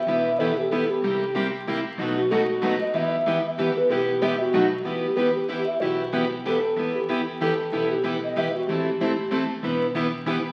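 This acoustic string swing piece in the jazz manouche style, a short cut from a longer work, moves at a brisk 188 BPM in a lilting 3/4 with swung eighths, its mood swinging and bittersweet in E minor. A hollow bass ocarina leads up front with an airy, clay tone, tongued notes and vibrato, carrying the solo from the opening until it drops out at 9.3 s. Two picked steel-string acoustic guitars comp close behind it: one plugged-in, boxy parlour instrument with fresh strings and audible finger squeak, and a bright concert guitar. Further back, a pizzicato upright bass adds a woody, growly, thumpy low end. The harmony circles through Em, C7 and B7 before touching Am and returning home, across two passes of the same section. A lush large-studio reverb and the crackle of a very old 78 rpm record give the whole a vintage, faraway sheen.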